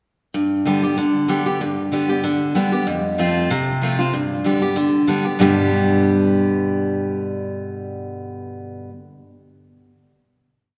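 Bluegrass in G mixolydian, this short, complete piece moves at a lively, driving 190 BPM in 4/4 with a light swing on the eighth notes. A lone picked steel-string acoustic guitar carries everything, playing solo from 0.3 to 8.9 seconds across a range from F2 to G4. Its dreadnought tone is bright and full-bodied, sitting up front as it works an alternating bass and strum pattern over a simple G to F and back to G progression. After a single brisk pass through the main section, the piece settles onto a final chord at 5.4 seconds. A generous, wet concert hall reverb with a 2.5-second decay surrounds the guitar, giving the recording the spacious ring of a church or concert hall.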